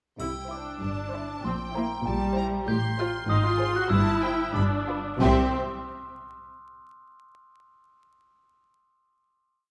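Set in a two-beat metre with uneven beats, this short, whimsical film cue has a quirky, playful character. A glockenspiel struck with rubber mallets carries the melody with a mellow, bell-like ring, joined by a rich, distant violin section playing a bowed counter-melody with vibrato. Underneath, a clear, focused viola section sits up front and doubles the tune at the octave. The cello section adds expressive portamento and pizzicato bass, while a soft-attacked double bass section doubles the bass line. A triangle sounds from 0.2 to 1.4 s, and a close, warm second violin section enters at 0.5 s with pizzicato accompaniment. The harmony moves through chords such as C7/Bb and Ab6 before settling on a final C chord at 5.2 s, set in a scoring-stage reverb with a touch of vinyl crackle.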